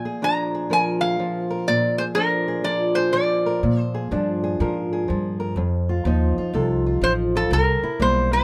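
A swung 4/4 groove at 124 BPM drives this gritty, swaggering acoustic country blues, cut from a longer piece and moving from Bb7 to F7 and C7. Up front, a metal-body resonator slide guitar played with fingerpicks carries the melody in a bright, nasal, metallic voice, dropping out after 4.1 seconds and returning at 7.0, while an old ladder-braced acoustic guitar fingerpicks a dark, boxy, woody accompaniment on aged strings throughout. A pizzicato upright bass with steel strings enters at 3.6 seconds with a warm, wooden tone, all set in light reverb.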